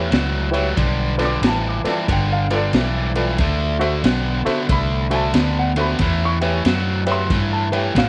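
A biting, overdriven electric guitar riff and a round, foam-muted fingered electric bass open this soulful, swaggering electric blues shuffle together at 0.0 s, both sitting up front. The tempo is 92 BPM in 4/4 with a swung eighth-note feel, in D mixolydian, and the chords move from A7 to G7, then D7, and back to A7. A crunchy breakbeat drum kit joins at 0.1 s, gritty and saturated with a punchy kick, a high-tuned snare and dark ride cymbal, its top end rolled off. At 0.5 s a mellow grand piano adds accompaniment in its upper register. Light small-room reverb gives the whole a close, intimate feel in this brief cut from a longer piece.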